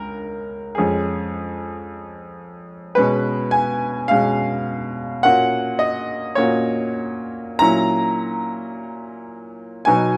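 Wistful and mournful, this romantic classical nocturne for solo piano unfolds in a rubato 4/4, its pulse bending freely. A bright baby grand carries the whole passage alone, with a brilliant yet worn, natural tone and a short sustain that keeps each note crisp. Placed up front in the sound, the piano spans from low in the bass up into its upper register, giving the phrases a full but intimate reach. A moderate reverb from a large studio lends a gentle halo of space around its lines. The harmony drifts from C# through its inversions and a seventh chord before settling toward F# at 5.2 seconds, then leans into a seventh again, leaving this brief cut from a longer piece suspended.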